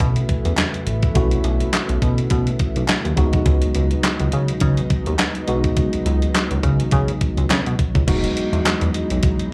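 A clean, thumpy 12-bit drum machine sets a swung 104 BPM groove in 4/4, its kick, medium-tuned snare, handclaps, hi-hat and crash sitting up front beside a glossy, nasal chorused synth bass, while a hollow group handclap joins very quietly from 0.6 seconds. This short, smooth and feel-good slice of early-eighties boogie funk carries a clean tine electric piano with plate reverb and slapback echo over a thick, warbling unison pad held in the background, the harmony moving from B9sus4 to C#9sus4 at 3.2 seconds and resolving to Emaj9 at 8.1 seconds. It is all heard as a live gig through the venue's PA, with a touch of club reverb.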